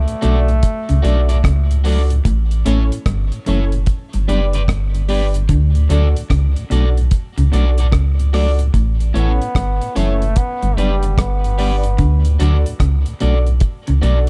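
Warm and laid-back, this roots reggae piece in D major moves at an easy 74 BPM in 4/4, with a swung sixteenth-note feel, and is cut from a longer piece. A soft, round dub sub bass sits up front with a deep, sustained tone, anchored by a dry, dark reggae drum kit of tight kick, hi-hat and rim click. Two slightly broken-up electric guitars fill out the groove: a darker one picks a low riff in the background, while a warmer one plays higher accompaniment through tape echo. A vintage baby grand piano adds smooth stabs with long sustain, and a flute-like tonewheel organ hums softly behind the band. A clear, distant trombone with tape echo states a brief phrase at the start, then returns for a solo from 9.2 to 12.4 seconds as the chords cycle through D, A and G. The small room ambience gives the whole production a dark, warm character.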